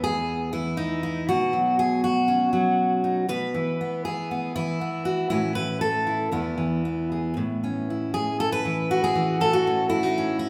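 Loosely timed and rubato around 119 BPM in 4/4, this nostalgic folk piece, cut from a longer work, features a solo fingerpicked steel-string dreadnought acoustic guitar in E major, bright and up front with fresh strings and audible finger squeak, ranging from E2 to B4 as it moves through E, Bsus2, E/B and A before turning to an Aadd9 at 7.4 seconds, all bathed in a wet recital-hall reverb.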